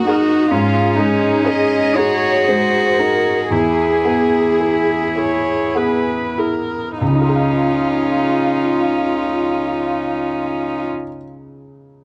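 A dry, close studio sound in the manner of a 1970s recording frames this brief, hopeful and intimate passage of neoclassical piano and strings, cut from a longer piece. A felt-muted upright piano sits up front, soft and mellow with a thin felt tone, laying down accompaniment in a 6/8 that moves freely in rubato and slows over the first 7.0 seconds. Above it, a chamber violin section carries the melody with light vibrato, a soft attack and a hushed sul tasto colour. A single cello, rich and pure with a floating quality, also sits up front and sings a second line. A lone viola adds a warm, airy-bowed accompaniment with vibrato, joining almost at once. Over harmonies that drift through added-ninth and suspended colours before settling on Dbadd9 at 7.0 seconds, the strings fall away at 10.9 seconds and leave the piano to finish by itself at 12.0 seconds.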